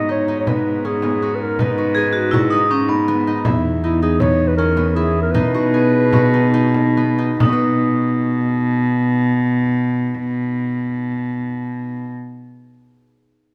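Moving in an uneven 5/4 with a straight feel at 136-162 BPM, this hopeful, restless chamber piece in B major sets a dark, smooth-topped clarinet melody over a ringing, fingerpicked concert harp playing arpeggios, a rich, bowed sul tasto cello holding the bass up front, and a frame drum sitting in the background. A vibraphone with medium hard mallets and slow motor vibrato adds a metallic, airy second line, briefly around 1.9 seconds and again from 7.4 seconds, when the music moves into a new section after slowing from 4.2 seconds. The clarinet falls silent at 7.0 seconds, leaving harp, cello and frame drum in a moderate recital hall reverb until the vibraphone returns and the drum drops out at 7.6 seconds, as this excerpt is cut from a longer piece.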